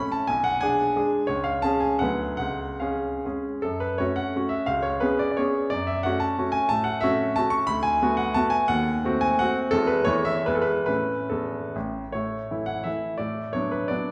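Wistful and capricious, this short romantic dance in triple time is cut from a longer piece and played on a solo baby grand piano. The tempo drifts between 133 and 191 BPM with a free, rubato feel, and dotted rhythms give the dance's lilt its spring. The music opens in F# minor, passing through diminished and minor harmonies before turning to A major at 7.7 seconds, where it settles onto an A chord at 10.9 seconds. The piano spans a range from A1 to C#6 and has a clear, polished, present tone. It sits in a wet recital hall reverb, heard from further back in the room, which gives the performance a lingering, airy sense of space.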